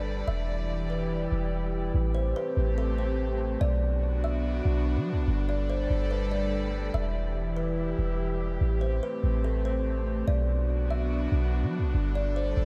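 A digital ambience surrounds this ethereal, spacious hip hop excerpt, a short cut from a longer piece, at 144 BPM in a half-time feel and set in A dorian. A woody, ringing kalimba carries the melody between A4 and E5, its plucked notes trailed by tape echo. Beneath it, a breathy pad with a chorus effect holds soft, mellow sustained chords, and a wind-like tuned noise texture sits far in the background, drifting through its own reverb. The clean 808-style bass is the most prominent part, deep and boomy with a fast attack and decaying notes. After a brief opening on Em, the harmony settles into a cycle of Am7, Bm, Gadd9 and Em from 1.9 seconds on, repeating as the excerpt runs to 12.7 seconds.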